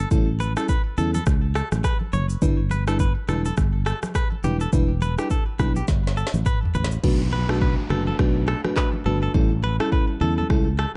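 A crystalline FM electric piano with a sparkling, warbling vintage tone and a chorus effect carries the chords in this mellow, smooth afrobeats excerpt in B minor, moving at 104 BPM with a swung sixteenth-note feel. Up front, a produced, electronic afro-pop kit pairs a deep kick and woody snare with handclaps, rim clicks, shaker, toms and crash. A round, dark fingered bass holds the low end alongside it. A twangy, clean, direct-recorded electric guitar picks a compressed riff through tape echo, while very quiet congas, damped and soft-handed, sit underneath. A drum fill at 5.9 seconds leads into a new section at 7.0 seconds, where the hi-hats drop out and a downlifter sinks into the background as the harmony moves from A7 and Em7 to Bm7 and back to A7. The overall production is dark and warm, wrapped in digital ambience.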